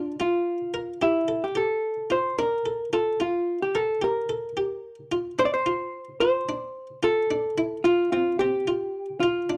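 A dark, clean vintage hollow-body jazz guitar carries the melody up front, its picked electric tone sitting between D4 and D5 across this 9.6-second fragment cut from a longer progressive instrumental. Beside it, a buff-stop harpsichord in the Flemish style plays arpeggios from C4 to Bb4, its plucked sound muted and lute-like, dry and close, a little quieter than the guitar. The mood is driving and bright, pushed along at 219 BPM counted in eighths in a straight 11/8. Harmony moves from Bb5 through Emadd11, Dm and Fsus24, then shifts at 5.4 seconds to a second passage built on Dm7 and Csus4. The sound is a close 1970s-style studio recording with a moderate small-room reverb.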